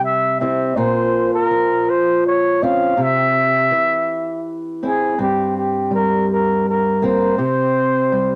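In a three-beat metre with a straight feel, this short acoustic folk-pop ballad excerpt carries an intimate, heartbroken mood. A breathy flugelhorn sings the melody between G4 and F5 as the solo voice, its mellow, whispered tone shaped by light vibrato and a soft attack and phrased in a jazz style, sitting up front yet sounding distant and roomy. Beneath it, a fingerpicked steel-string acoustic guitar supplies dark accompaniment from G2 to Bb4, with finger squeaks audible in its up-front, concert-style sound. Both parts play throughout the 8.4 seconds, moving through C, Bbmadd9, C and Gmadd11 before settling on a bare C5. A wet studio reverb with a short decay surrounds the pair, giving the fragment an intimate setting.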